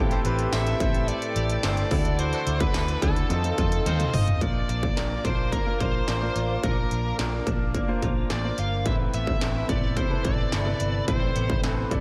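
1980s-style pop at 108 BPM, nostalgic and dramatic and cut from a longer piece, where a distorted, clanging industrial drum kit sits up front over a dark, round, foam-muted fingered bass; a clear grand piano with audible action noise, shimmer reverb and slapback echo carries the accompaniment; a compressed clean electric guitar riff with ensemble chorus stays in the background; a soft sawtooth analog pad holds very quiet chords; tight, bright horn stabs sound only until 4.0 s; a smooth overdriven lead guitar melody enters at 0.5 s; and a drum fill at 3.9 s moves the harmony from Am7, Dadd9 and F7 into a long Bb before Amadd9, the whole set in a lush hall reverb with a big arena sound.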